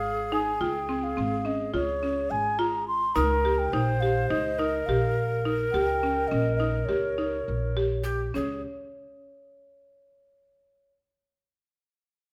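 This playful, shimmering piece of contemporary chamber music opens with the whole ensemble at once: a mellow baroque flute carrying the melody, a tenor recorder on a second line, a buzzing marimba playing arpeggios and an upright bass underneath, while a delicate, bell-like celesta adds a brief touch at the start. It moves in an uneven 9/8 at 209 BPM counted in eighths, with a straight feel, in Db lydian, and the harmony shifts from Db to Eb7 before settling on Db5. The flute sounds airy with a straight tone and crisp attack, set against the breathy, slightly unsteady recorder, whose close-miked chiff and vibrato give it an intimate edge. The marimba's hardwood bars, struck with medium hard mallets, come across woody, dry and boxy, and the pizzicato bass sits up front with an acoustic, steel-string tone. The flute, recorder, marimba and bass stop at 8.6 s, and the soft, sweet celesta, which returns at 8.4 s with a vintage, band-limited sound, carries on alone until 10.9 s. 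A moderate recital hall reverb wraps the ensemble in this excerpt from a longer piece.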